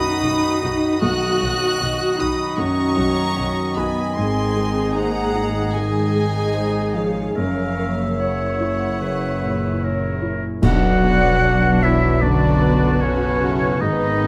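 Opening on a dark, mellow baby grand piano beneath sul tasto violin sections carrying the melody and a floating second line, with clear oboe and distant clarinet lines, background French horn chords, woody viola and a bowed cello and double bass foundation, this bittersweet, moving orchestral film-score passage drifts rubato at 76 BPM through a B, Ab and Gb7 progression until it settles into B minor at 10.6 seconds, where a distant silver flute enters and dark clash cymbals, bass drum and very quiet timpani mark a band accent, all set in a moderate scoring-stage reverb.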